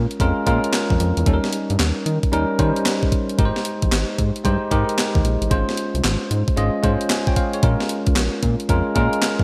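A swung, bouncy 4/4 groove in a slick new jack swing R&B style is driven by a gated 80s digital drum machine, with a thumpy kick, handclaps, hi-hat and a gated-reverb snare set up front, joining at 0.1 seconds. Beneath it a fat, thick analog bass with a detuned sawtooth edge and a filter sweep sustains mellow low notes. A bell-like, clean tine electric piano with subtle chorus moves through Bbm7, Eb7, Abmaj7 and Dbmaj7/Ab in a bright 1980s-style digital production with light reverb, and the short passage is cut from a longer piece.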